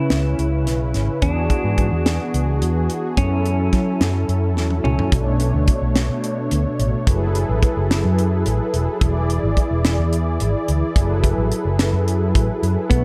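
Up front, an amped fretless electric bass anchors this driving, intricate progressive instrumental, cut from a longer piece and set in 7/8 at 216 BPM counted in eighths, with a straight feel and tuning at A4 = 439 Hz. A crisp, polished fusion drum kit with a high-tuned snare and tight kick works hi-hat, kick, snare and toms in an airy studio room, capping the opening passage with a fill that leads into a new section at 5.1 seconds. A smooth, detuned sawtooth pad with soft attack, long release and chorus sustains mellow chords throughout, moving from C#m7, Eadd9 and F#m7 to Bm9, F#m11 and E7. A clean, picked, compressed electric guitar adds a second line through spring reverb and delay in the first section, dropping out at 5.1 seconds and returning only for a brief moment at 12.9 seconds. The production is dark and warm, with a dry room sound.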